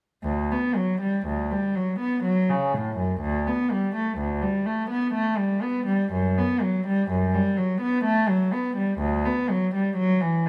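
A lone bowed cello with a reedy, gut-string, period-style tone enters at 0.2 s and plays alone until 10.5 s, shaping a serene, dance-like baroque suite movement in D major at a rubato 62 BPM in 3/4, ranging from D2 to B3 within a moderate stone-room reverb, in this short cut from a longer piece.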